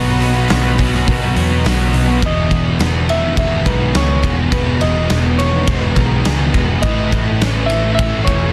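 A straight 4/4 pulse at 104 BPM drives this wistful, blissful shoegaze and dream pop fragment in E major, anchored by a big, up-front rock drum kit with a punchy kick and a dark, rolled-off top, and a vintage foam-muted electric bass that sounds round and amped. In the background, a thick fuzz guitar with analog chorus, a double-tracked overdriven electric guitar and a very quiet overdriven semi-hollow guitar play riffs alongside a shimmering, octave-doubled twelve-string acoustic guitar picking bright arpeggios, while an airy, detuned sawtooth pad with chorus holds chords until 2.2 seconds. From 2.3 seconds a clean semi-hollow electric guitar carries the melody through digital delay, all within a dense, heavily limited modern master.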